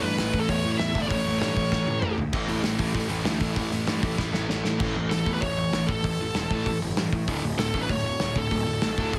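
A sludgy, double-tracked guitar riff and a bluesy lead guitar open this upbeat, rebellious punk rock cut, with a growly fuzz bass in the background and a loose indie drum kit coming in at 0.2 seconds. The drums are acoustic and up front, with a punchy kick, a medium-tuned snare, dark cymbals and a rolled-off top, set in a pumping studio room, and drum fills lead into each new section. The picked lead guitar sits up front, drops out after its opening phrase and returns at 5.1 seconds, playing above the low, overdriven rhythm guitar. The bass is bright and direct, and its fuzz adds grit beneath the thick guitars. The mix is dry and heavily compressed, with a radio sound, and the recording is cut from a longer piece.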